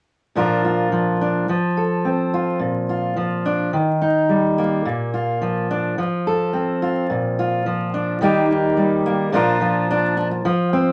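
A steady, straight four-beat pulse drives this short highlife excerpt, cut from a longer piece, with a danceable, warm mood. A single fingerpicked steel-string acoustic guitar carries it all, playing solo from 0.4 seconds to the end at 10.9 seconds across a range from low bass notes to the upper middle register. The guitar sits up front with an auditorium-sized acoustic body, and the harmony moves through a bright cycle of three chords that returns home as the first section closes. A brief new section begins at 9.3 seconds on the home chord. Moderate studio reverb lends the room a gentle halo, while a layer of vinyl crackle gives the recording an aged, dusty texture.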